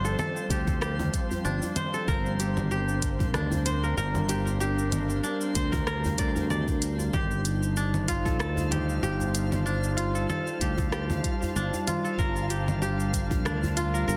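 An airy, breathy pad, ringing fingerpicked kora arpeggios with delay, a growly fretless electric bass up front and a twinkling granular shimmer in the background open this mystical, earthy organic downtempo excerpt in G minor at 95 BPM, with the pad and bass pumping under sidechain and the chords moving between Fadd9/G, Gm7 and F9/G. Tape-toned electronic drums with smooth hats, cabasa, congas and rim click arrive at 0.1 seconds, then a deep electronic kick at 0.5 seconds and a close, dry djembe with metal rattles at 0.7 seconds, all set in a lightly swung 16th-note feel. A moderate scoring-stage reverb surrounds the dense, heavily limited modern mix.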